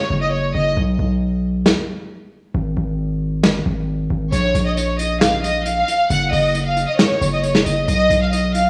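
At 135 BPM in a half-time 4/4 feel, this hard-hitting, eerie trap excerpt rides on a distorted 808-style bass that enters at 0.1 seconds, heavy and aggressive with a noise layer and fast, decaying attack, joined at 1.7 seconds by a muffled, saturated brush drum kit of hi-hat and snare with a rolled-off top. A lush, bowed violin section carries the melody with vibrato and a soft attack, sounding briefly at the start and returning at 4.3 seconds after a break, its tone filtered and trailed by digital delay. Light small-room reverb surrounds the mix as the harmony moves from Ebm7/Gb through Bb5 to B5.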